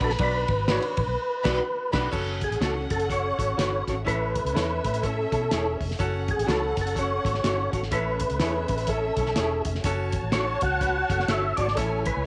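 Uptempo 1960s-style soul at 124 BPM with a swung 4/4 feel, this joyful, danceable excerpt is led by a mellow, key-clicking tonewheel organ carrying the melody up front through chorus vibrato and a fast rotary speaker, over a muffled, cloth-damped drum kit with a fat snare and dark cymbals and a round, foam-muted electric bass. A lush, distant string section sings a second line with vibrato and portamento, while a brilliant upright piano and a slightly broken-up guitar playing stabs through analog chorus sit in the background. The band hits an accent from 1.2 to 2.1 seconds before settling into a progression moving from Bm to F#m and A, all in a small, lightly reverberant room.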